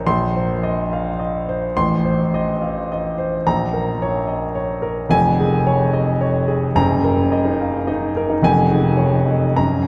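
Classical romantic character piece for solo grand piano in a rubato triple metre, lyrical and warm, its intimate, up-front tone carrying audible action noise as the harmony turns from minor toward a brighter major around 5.1 seconds, all bathed in a long, wet cathedral reverb in this short excerpt cut from a longer work.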